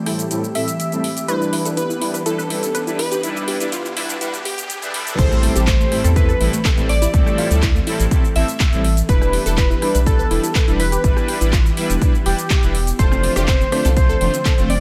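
An airy, breathy pad opens this excerpt of expansive, emotional progressive house, its sustained chords treated with chorus and sidechain pumping, and it is quickly joined by a unison pluck playing arpeggios in the background, soft supersaw stabs colored by cassette tape and a low-pass filter, a house drum kit with metallic hats, handclaps, rim click and shaker, and a catchy, plucky unison lead melody carried on delay. Through the build-up, filter sweeps move across the pluck and supersaw while a very quiet riser and impact rise beneath. The drop lands at 5.2 seconds, bringing in a punchy, up-front electronic kick, a deep, round analog bass line, and a pure, warbling FM synth bell playing a second line in the background through chorus, phaser and dub echo. Sidechain pumping breathes through the pad, pluck, supersaw, lead, bell and bass, and the harmony moves between Am7 and Em7 before settling on F6. 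At 13.1 seconds, electronic congas and rim click join from the background, sounding as if re-recorded in a large room, all within a light digital ambience.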